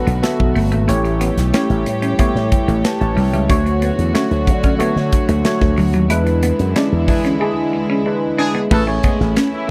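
A dry, close recording in a 1970s studio style carries this breezy, urban slice of polished 1980s jazz-funk pop, moving at 92 BPM in A major. A growly, punchy slap bass through an envelope filter sits up front with a punchy acoustic drum kit, while a worn, slightly out-of-tune tine electric piano with analog chorus comps and adds a fill at 2.2 seconds. A clean, picked electric guitar riff shimmers through lush chorus over soft, floating bowed strings, and a clear, distant horn section enters at 7.1 seconds on a second line during a band accent and break before the Amaj9 chord lands.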